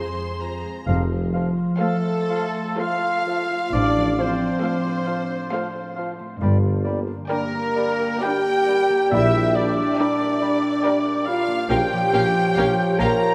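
Lush bowed violins carry the melody over a quieter second violin line, smooth violas, ringing harp arpeggios, a dark, woody double bass section and cellos from the start, then a shadowy clarinet, mellow bassoon and roomy tuba join at 0.9 seconds, and an airy flute group, a warm oboe and a mellow French horn section holding sustained chords arrive at 1.8 seconds, all within an elegiac, solemn classical slow movement in F major and 3/4 time that moves with rubato at 58-71 BPM and blooms in a vast, echoing cathedral reverb.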